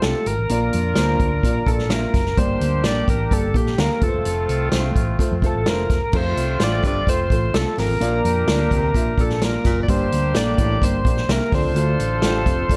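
A bright, reedy tonewheel organ carries the melody up front with light overdrive, key click and a slow rotary speaker over a tight horn section in the background, a warm grand piano, a round hollow-body bass and up-front vintage drums with dark cymbals, all driving this joyful, danceable 1960s-style soul groove at 128 BPM in F major until a close-miked, jazzy baritone saxophone adds a riff with vibrato from 6.1 s.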